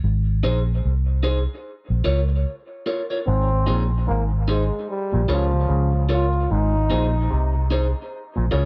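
Laid-back and spacious, this reggae excerpt in Ab major sits at 74 BPM with a swung feel, opening on a break where a dark, round, foam-muted electric bass sits up front and a picked, compressed electric guitar at the edge of break-up adds warbly pitch drift, filtering and dub echo. At 3.3 seconds a distant, roomy trombone takes a mellow solo with vibrato until 7.3 seconds, while an overdriven, stringy clav riff runs through auto-wah and dub echo in the background. The echo-heavy mix, with light reverb, rocks gently between Ab and Bbm.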